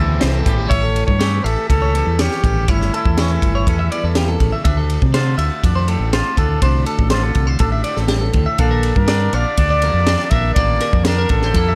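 At a straight 122 BPM in 4/4, this wistful, intricate math rock and Midwest emo fragment opens with a brief crunchy overdriven guitar riff as a growling, overdriven fingered bass and a crisp, high-tuned fusion kit with a punchy kick drive beneath twangy guitar accompaniment and bright, lush-chorused clean guitar arpeggios, while a clear trumpet with light vibrato and slapback echo carries the melody from 0.7 to 4.4 seconds and returns at 8.6 seconds over chords moving from Am7 through A7 and Dm9 to Bbmaj7 in a dark, dry production.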